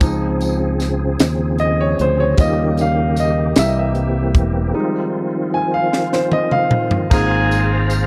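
A slow, jubilant gospel passage in a straight 6/8 opens with a warm, vintage concert grand piano taking a solo over the full band. Beneath it, a reedy tonewheel organ holds sustained chords, its slow rotary speaker, chorus vibrato and key click adding shimmer. A round, dark fingered electric bass and a punchy, polished fusion drum kit with a high-tuned snare and dark cymbals sit up front, while a jingly tambourine rings softly in the background. The drums play a fill from 5.9 seconds, and at 7.1 seconds a tight, vibrato-rich saxophone section enters with the melody as the harmony settles on an Ab69 chord. The dry, close 1970s-style studio sound keeps the uplifting mood intimate and immediate.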